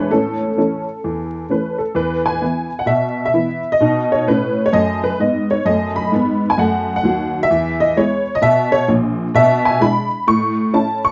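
Stride-piano jazz with a swinging, playful mood, this 11.1-second fragment of a longer piece features a solo honky-tonk upright piano, detuned and jangly with a woody, up-front character, ranging from the deep bass to the bright upper register. After a brief opening on an A chord, the music settles at 1.9 seconds into a longer passage that moves between E and B7 harmony before returning toward A. Close, detailed miking and light reverb place the piano in an intimate space, while a layer of vinyl crackle lends the recording a vintage feel.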